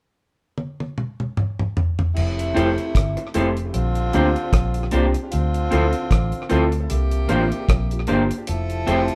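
A dry reggae drum kit opens the recording with a fill from 0.6 to 2.2 seconds, its tight kick, toms, rim clicks, hi-hat and crash sitting up front with a dark, rolled-off top. This sweet, smooth lovers rock reggae passage is cut from a longer piece and moves at 76 BPM in 4/4 with a gentle sixteenth-note swing in F major. From 2.2 seconds the harmony runs through Fmaj7, Bb69, Dm7 and C7sus4 before returning to Fmaj7, as a vintage foam-muted fingered electric bass supplies round, punchy low notes. An electric guitar through a small old amp adds slightly broken-up, lo-fi picked stabs, while a concert grand piano with deep bass, a boxy tone, long sustain and tape echo fills in the accompaniment. A clear, present saxophone section carries a pop-style second line, and the group sounds like a band playing live in one room with moderate studio reverb.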